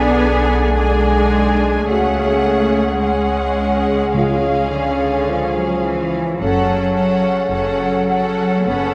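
A wet, reverberant scoring-stage sound frames this melancholic, elegiac classical fragment, cut from a longer piece, moving at a slow, rubato 53 BPM in 4/4 over chords from G#dim/B through C#sus4 and C# to F#m. A rich, focused symphonic violin section carries the melody with vibrato, joined by a clear studio violin section, an airy flute ensemble and a soft-attacked warm clarinet on second lines, while a bright, close viola section and a mellow bassoon accompany, a dark, distant French horn section holds sustained chords, and lush cello and double bass sections supply a smooth, even bass. Timpani struck with hard mallets on calf heads enters only from 4.1 to 5.8 seconds.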